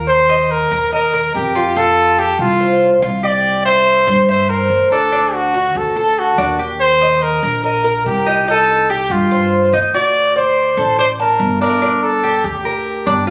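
Captured on a phone in a room with club reverb and compression, this sultry, danceable Cuban son and guajira passage at 143 BPM opens with a mellow, metallic Cuban tres picking arpeggios on double strings and a dark, woody pizzicato upright bass, joined at 0.1 seconds by a soft-attacked, jazz-style trumpet soloing up front with vibrato over chords moving from Eb through Cm to Gm.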